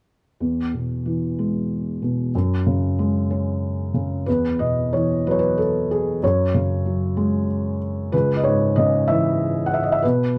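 A felt-muted upright piano, soft and intimate with thick felt and audible action noise sitting up front, carries this tender classical excerpt alone from 0.4 to 10.4 seconds in a rubato 6/8, drifting through open suspended harmonies before settling on a minor chord, all wrapped in light reverb and a dark, warm production.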